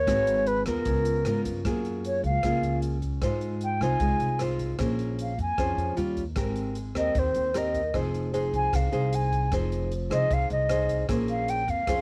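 A mellow concert flute, fingerpicked nylon-string guitar and pizzicato upright bass open this short bossa nova fragment together, with a drum kit joining at 0.1 seconds. The mood is smooth and intimate, set at 152 BPM in 4/4 with a straight feel in F minor, and the flute takes a solo from 1.6 seconds to the end, airy and touched with vibrato, with a crisp attack and rolled-off highs. Also up front, the classical guitar sounds full-bodied, with audible finger squeak and a cassette-tape tint that belongs to it alone. The woody upright bass sits up front and moves through chords such as Gbmaj9, Fm7, Bbm9 and Abmaj9. Further back, the big-band kit brings a polished hall sound, with hi-hat, rim click and a punchy kick. Light reverb and the homespun cassette recording give the whole a close, domestic intimacy.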